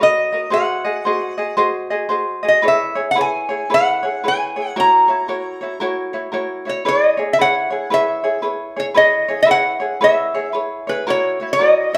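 Relaxed and languid, this Hawaiian piece moves at an easy 114 BPM in 4/4 with a gentle swing on the eighth notes. A metal-body resonator slide guitar carries the melody, its metallic, nasal voice sitting up front as it glides with the slide and picks out notes with fingerpicks. Beneath it, a fingerpicked ukulele supplies light, acoustic accompaniment, also up front, though sitting lower in level than the lead. Both parts play throughout, moving through a progression that opens on Bmaj7 and settles on E6 before turning to F#7 at 11.1 seconds. The band sounds as if playing together in one large studio, with a moderate reverb giving the pair a sense of space in this short section cut from a longer piece.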